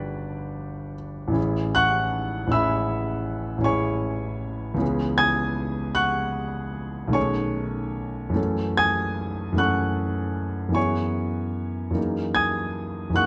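Unfolding in a rubato 9/8, this short fragment of a luminous, hazy impressionist piece is carried by a solo grand piano, warm and intimate, placed up front with its action noise audible, and ranging from G1 to B6 over its 13.3 seconds. Lush seventh and extended chords drift from Gmaj7 and Amaj7 through C#m7 and B13 before settling on F#13. Close, detailed microphones capture the natural tone, set in a moderate recital hall reverb.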